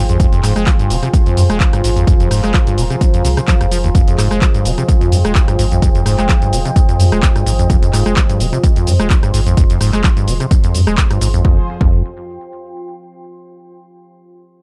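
An overdriven, punchy electronic kick sits up front in this hypnotic, raw acid house excerpt, joined by a squelchy, resonant sawtooth acid bass riff with delay, a round sine sub bass and a dry analog drum machine of handclaps, hi-hat, rim click and shaker, while a lush, bright detuned pad holds sustained chords in the background and a deep, moody ambient pad adds a dark reverberant texture; both pads and the sub pump with sidechain, a filter sweep runs on a synth pad until 11.4 seconds, and the ambient pad lingers alone past 12.0 seconds to the end at 13.3 seconds.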